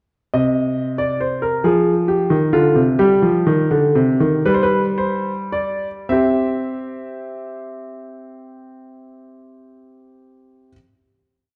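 Bathed in a dark, reverberant recital-hall ambience, this brief classical piece sounds close and vintage, with a grand piano placed up front. The solo piano has a smooth tone and deep bass as it spins a baroque-style two-part invention in 6/8, its two imitative lines moving through minor harmony with a solemn yet driving mood while the pace gradually slows until 7.8 seconds. The exposition gives way at 6.1 seconds to a final major chord that rings out in the hall's warm tail.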